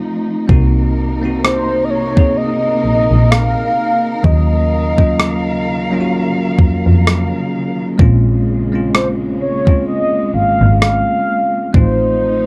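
A dark, lightly reverberant production frames this moody, late-night contemporary R&B fragment in Bb minor, moving at a slow 64 BPM with a swung 16th-note feel and chords passing from Cm7b5 through Ebm9 and Bbm9 to F7/A. A bell-like tine electric piano and a lush, distant studio string section, carrying sidechain pumping, sound from the start. They are joined at 0.5 seconds by a bowed double bass with a smooth top and a thumpy, sampler-style 12-bit drum machine of kick and rim click, re-recorded in a small room and placed up front. From 1.4 seconds a round, horn-like sawtooth synth lead with a soft attack carries the melody in the upper register, warbling through chorus and tape echo.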